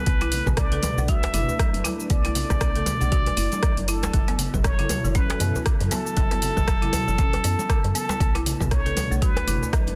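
A plunger-muted trumpet carries a jazz-style solo with wah-wah tones and scooped notes, trailed by digital delay, in this driving, hypnotic afro house excerpt with a swung sixteenth-note feel. Underneath, a rustic hard-mallet marimba plays dry, percussive arpeggios, while a detuned sawtooth pad, a round FM bass, and the marimba all pump against the kick over chords moving from Bm7 to F#m7 and back at 8.2 seconds. A deep electronic kick anchors an overdriven deep house kit of cabasa, hi-hat, rim click and toms, with bright congas and a tight, cracking djembe sitting in the background, all under studio reverb and a dense, heavily limited modern master.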